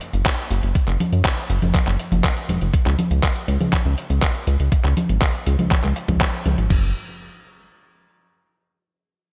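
Danceable and nostalgic, this short italo disco excerpt moves at 121 BPM in a straight 4/4 feel. A detuned 8-bit digital drum machine sits up front from the start, its congas, crash cymbal, handclaps and hi-hat sounding sampler-style and tape-warm, with low-pass filtering softening the hats, snare, percussion and cymbals. A thumpy electronic kick drum enters at 0.3 seconds, carrying the same re-recorded small-room character. The chorused synth bass, also up front, ranges from E1 to F#2 with a retro, glossy, nasal tone built from pulse-wave and sawtooth sounds, pulse-width modulation and a filter pluck with a fast attack and sustained, dark body. The parts fall away just before 7 seconds, and a light reverb gives the mix a modest sense of space.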